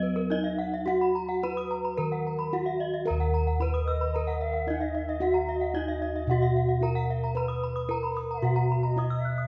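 Set in a moderate recital-hall reverb, this shimmering, hypnotic fragment of Balinese gamelan in Eb pelog moves at 112 BPM in a straight 4/4: a horn-mallet bronze metallophone carries the boxy, paired-tuned melody, two brighter, airy metallophones ring out arpeggios above it, mellow bossed gongs struck with padded beaters sit up front on the bass, and a reedy bamboo bansuri with vibrato and a soft attack enters at 3.9 s on a second line.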